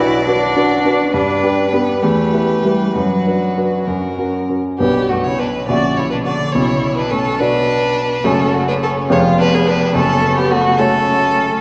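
A quick, cheerful and graceful classical-period movement for piano quartet in 6/8 with rubato, cut from a longer piece, where a rich, focused violin carries the melody over a clear second violin and a smooth, even cello, all with vibrato, while an up-front, polished grand piano with short sustain accompanies, and a wet concert-hall reverb in a dark, warm production gives the violins a distant glow as the music turns from its opening section to a new one at 4.8 seconds.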